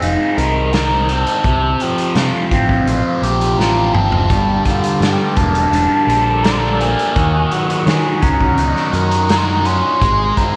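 A hollow, airy concert flute with slapback echo carries the melody over a double-tracked fuzz guitar riff run through phaser, a growling overdriven bass and a gritty, saturated garage drum kit in this hypnotic, mysterious psychedelic rock excerpt at 84 BPM in a straight 4/4. After a drum fill at 3.6 seconds, a buzzy overdriven combo organ enters in the background at 4.3 seconds with sustained chords, as the harmony moves from Abadd9 and Csus4 through Gmadd9 and Ebm7. The guitar sits bright and up front, while the whole is bathed in light small-room reverb.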